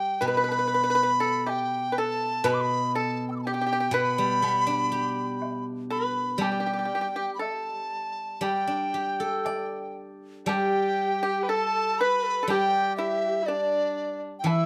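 Chinese traditional chamber music with a graceful, pastoral mood, unfolding at an unhurried, rubato pace in this brief cut from a longer piece. A large bamboo dizi carries the melody up front, its reedy, buzzing tone crisp in attack and shaded with vibrato. Beneath it, a dry, percussive pipa plucked with fingerpicks plays a second line, while a steel-string zither adds ringing, silvery accompaniment across a broad low-to-middle range. A woodblock enters at 0.5 s and stays in the background, sounding as if in a small room. At 10.5 s a new section begins as a dark, woody erhu joins the pipa's second line, a lone bowed voice with soft attack, portamento and vibrato that sits distant behind the dizi, all captured with close, detailed microphones and light reverb.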